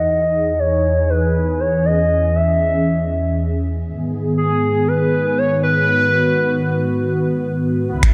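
Bathed in plate reverb and an echo-heavy, low-pass filtered haze, this intricate, cerebral IDM excerpt at 119 BPM sets a warbling, nostalgic, wave-folded lead with chorus, vibrato and tape echo over a warm, detuned sawtooth pad that carries a filter sweep through Emaj7 and G#m, until a deep analog kick and an industrial kit of finger snaps and smooth hats arrive together at 8.0 seconds, just as the cut ends.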